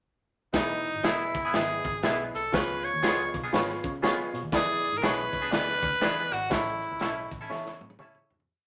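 A wet small-room sound frames this short, uplifting uptempo 1960s-style soul piece in E major at 121 BPM with a swung feel, where a raspy, forceful tenor saxophone carries a motif-based melody of call phrases up front over a crunchy, saturated breakbeat kit driving a soul beat with the snare on all four beats, a clear, woody, slightly detuned upright piano playing chords in quarter notes, a punchy fingered electric bass with a syncopated line and chromatic approach notes, and bright, clean semi-hollow guitar chops on the backbeat that enter at 1.0 s, before the piece fades out from 6.5 s into a drum fill at 7.5 s.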